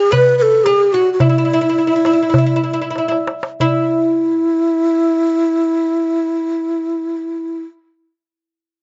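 This Arabic maqam ensemble piece, cut from a longer work, carries a passionate, warm mood in 4/4 with a straight feel, moving between 92 and 113 BPM in maqam rast on E. A breathy, low ney made of reed cane leads the melody up front, its end-blown tone shaped by vibrato and tongued notes. Alongside it, a fretless oud plucked with a plectrum plays a second line in the same register, its woody double strings carrying a deep voice and a slapback echo. A clay-shelled darbuka with a natural skin sits close and dry, played with soft hands, slowing with the opening passage and closing it with a drum fill at 3.0 s before a new section begins at 3.6 s and the drum falls away at 3.9 s. Recorded outdoors with light reverb, the sound has a dark, rolled-off top.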